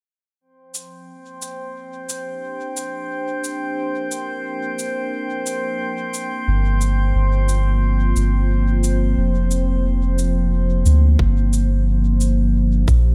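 Deep and spacious, this ambient dub excerpt in G minor moves at 89 BPM with a swung 4/4 feel, opening on a Gm7 chord held by a warbling, detuned, lo-fi pad that carries a filter sweep, alongside a glassy, drifting high texture of sine-like overtones and a tape-warm cabasa. A soft, round dub sub bass enters up front at 6.5 seconds, and the glass texture drops out at 11.2 seconds just as a tight electronic kick arrives. The mix is dry overall, though the pad and glass texture each carry chorus and their own reverb, while the cabasa and kick sound re-recorded in a large room.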